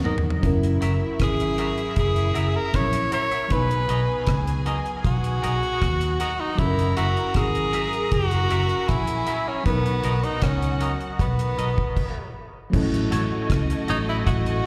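Tender and romantic, this lovers rock reggae excerpt moves at a relaxed 78 BPM in B major, opening on a drum fill before a bright tenor saxophone carries the melody up front at 1.2 seconds, wrapped in dub and slapback echo. Underneath, a deep, dry reggae kit with a tight kick and a round, punchy, foam-muted fingered bass anchor the groove, while a mellow, warbling FM electric piano with chorus supplies accompaniment. A twangy guitar adds background stabs and a distant, biting violin section plays a second line, all heard through a venue PA with recital hall reverb, until a stop at 12.0 seconds gives way to an A6 chord at 12.7 seconds.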